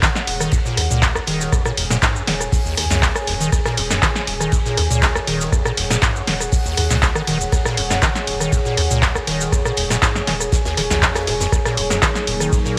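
A squelchy, resonant square-wave acid bass riff drives this gritty, driving acid house cut in Eb minor at 120 BPM, with tube saturation, chorus, delay and sidechain pumping, over a deep tape-toned electronic kick, a punchy up-front analog drum machine with claps, rim clicks and shaker, a very quiet oversized low-tuned acoustic kit with dark cymbals, a thick saturated sine sub bass from 0.3 seconds, and a nostalgic, lo-fi warbling pad, while a moody detuned analog pad slips in at 11.5 seconds, all within a lush hall reverb and bright 1980s-style digital production.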